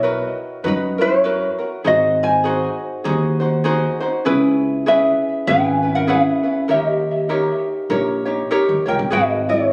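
Hawaiian music with a languid, relaxed mood at 99 BPM and a lazy swing in 4/4: a light, fingerpicked tenor ukulele carries the melody up front with a touch of tape echo, a second fingerpicked ukulele adds gentle acoustic accompaniment, and a woody, warm pizzicato upright bass on steel strings sits lower in the mix, all moving through Bmaj7, G#7, C#m7 and D#7 toward G#m7 in this short phone-recorded clip cut from a longer piece, heard within the moderate bloom of a recital hall.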